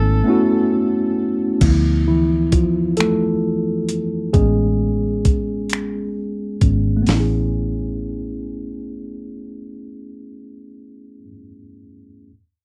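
Slow six-eight R&B with an intimate, tender mood, cut from a longer piece and captured in a dry, close 1970s-style studio sound. A breathy, whispered tenor saxophone with tape echo offers only a brief, soft-attack phrase with vibrato before a short silence. A mellow, slightly out-of-tune tine electric piano sits up front throughout, and from 1.6 seconds it takes a solo over a harmony that moves from Amaj9 to Dm6 and back. A dark, round, foam-muted fingered electric bass anchors the low end. A gritty, compressed soul drum kit with a thumpy kick, finger snaps, hi-hat, snare and crash cymbal plays from 1.6 to 7.3 seconds, its tape-warm sound re-recorded in a large room.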